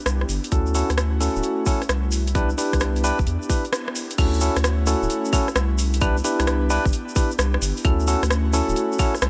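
A swung two-step shuffle in 4/4 drives this sunny, bouncy UK garage excerpt, cut from a longer piece and mixed with little reverb. An overdriven garage drum kit with metallic hats, claves, crash cymbal and rim click sits over a tight, tape-warm electronic kick that enters at 0.5 seconds, while a grainy, mellow tube shaker adds close, acoustic texture. A deep, thick saturated sub bass with a fast attack holds the low end up front and pumps with sidechain, as does the airy, breathy pad, whose detuned, chorused sustained chords float in the background, moving between Cmaj9 and Dmaj9. Bright, barky electric piano stabs played through a combo amp sit up front, trailed by delay. A band accent at 3.7 seconds leads into the drop at 4.2 seconds, which carries the groove to the end of the clip.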